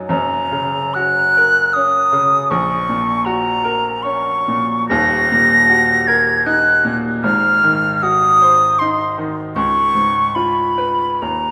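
Serene and warm, this short passage, cut from a longer romantic classical piece, pairs a flute with a grand piano at 76 BPM in 3/4 time, its beats uneven and pulled by rubato. The concert flute carries the melody high in its register, entering at 0.1 seconds with a pure, hollow tone, vibrato and tongued notes, and it sits up front in the mix. Beneath it, a baby grand piano provides accompaniment from the very start, sounding bright, brilliant and open across a broad span from its low bass into the middle register. The harmony moves from Gb to Gb/Bb, then to D#m, G#7 and C#7. A wet concert hall reverb lends the duo a spacious setting through to the close at 11.5 seconds.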